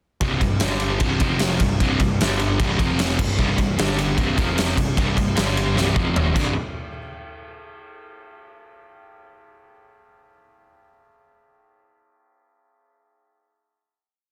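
A straight 4/4 hard rock pulse at 151 BPM in C minor drives this short, aggressive and heavy piece, where a huge arena drum kit with a fat snare and punchy kick sits up front alongside a dark, sludgy distorted guitar and a background overdriven guitar with tremolo, both playing a power-chord riff over C5, G5 and F5, while a fuzzy, overdriven picked bass doubles the riff in driving eighth notes. A drum fill from 5.8 seconds runs beneath a brief Eb5 chord, and a final hit rings from 6.6 seconds in a dense, heavily limited modern master with light studio reverb.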